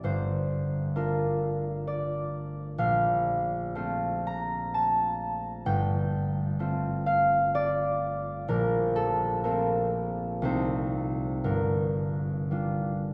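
In a slow, rubato 3/4 lilt at roughly 55-66 BPM, this gentle, wistful classical piece unfolds for a solo concert harp in G minor, tuned to A4 = 438 Hz. The harp carries the entire 13.1 seconds alone, its fingerpicked strings ringing across a span from G1 up to Bb5. Its tone is acoustic and warm, and it sits up front even as the wet cathedral reverb, with a decay of 4.7 seconds, gives the impression of listening from further back in a cathedral. The harmony drifts from Gm9 to Bbmaj9 and on through Gm11, returns to Bbmaj9, then touches Cm6 at 10.4 seconds before settling on Gm7 at 11.4 seconds. The passage is cut from a longer piece, so it feels like a single reflective breath lifted from a larger work.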